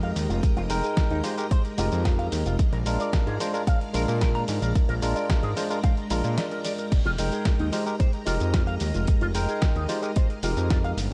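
This sleek, sensual nu-disco excerpt opens with a barky, bright tine electric piano played through a combo amp, sustained chords from a lush, vintage string machine set in the background, a clean, twangy envelope-filtered guitar riff, a fat, detuned sawtooth bass and a gritty, compressed soul drum kit with crash, hi-hat, shaker and a fat snare. A punchy, tape-warm electronic kick joins at 0.4 seconds and sits up front alongside the thick bass, which carries a filter sweep and a fast attack. The electric piano and strings both pump against the sidechain, while analog delay trails the piano, the picked guitar and the kit, and an ensemble chorus thickens the full-bodied strings. The harmony moves from Fm11 to Bb7 and back, with a brief break at 6.4 seconds before the return to Fm11. Light reverb and digital ambience give the mix an echo-heavy, roomy glow.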